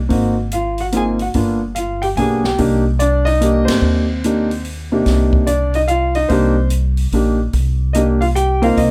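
Smoky and moody, this jazz piano trio excerpt in C minor swings at 146 BPM in 3/4, with an intimate, up-front grand piano carrying the melody over woody pizzicato upright bass and an open acoustic drum kit of hi-hat, boomy kick, dark ride cymbal and high-tuned snare. The band hits an accent together at 3.6 seconds, all inside a light reverb, with the piano's action noise audible throughout.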